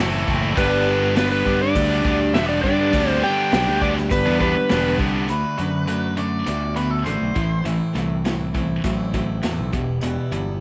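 Light reverb and small-room ambience frame this driving, brooding classic rock excerpt, built on two bright, picked distorted guitar riffs and an up-front, growling fingered electric bass with overdrive over a vintage drum kit with a punchy kick and rolled-off top and a boxy, swing-style picked acoustic guitar in the background, while a dark overdriven slide guitar carries the melody from 0.6 to 5.0 seconds beside a slightly broken-up, compressed lead guitar, and a phaser-treated overdriven electric guitar adds a second line briefly at the very start and again from 5.3 to 7.6 seconds.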